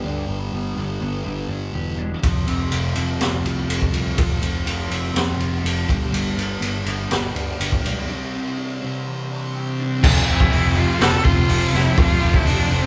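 Over a straight 4/4 pulse, this short cut from a longer quiet-loud alternative rock piece sounds anthemic and bittersweet. A twangy electric guitar through a small old amp picks phased arpeggios alongside a thick fuzz guitar riff and a round, punchy overdriven bass from the start. A raw garage drum kit comes in at 2.2 seconds, up front and gritty, with a high-tuned snare, punchy kick, hi-hat, ride and crash, and its top is rolled off. A break arrives at 8.1 seconds, and a smooth bowed cello with vibrato takes the melody from 9.6 seconds. At 10.0 seconds the arpeggiated guitar stops as the second section hits, with a bright cranked stack guitar and a dark, double-tracked fuzz guitar adding riffs in the background. The band sounds live in one large room with moderate reverb and a faint mains hum.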